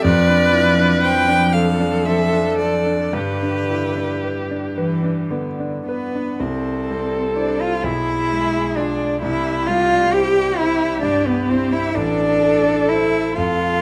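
This serene classical excerpt from a slow romantic movement for piano quartet opens with violin, viola, cello and concert grand piano sounding together from the very first moment. It moves in a gentle 6/8 at 35-44 BPM in dotted quarters, with an unhurried rubato feel in C major. The solo violin carries the melody in a rich, smooth, even tone with vibrato, heard close up. Beneath it the cello sings a second line with a soft attack, expressive portamento and vibrato, sitting up front in the mix. The viola and the intimate, vintage-sounding piano, with its deep bass and audible action noise, supply the accompaniment. A moderate large-studio reverb lends a sense of space, and at 6.4 s the music turns to a new section, moving through C, Bdim7 and Am.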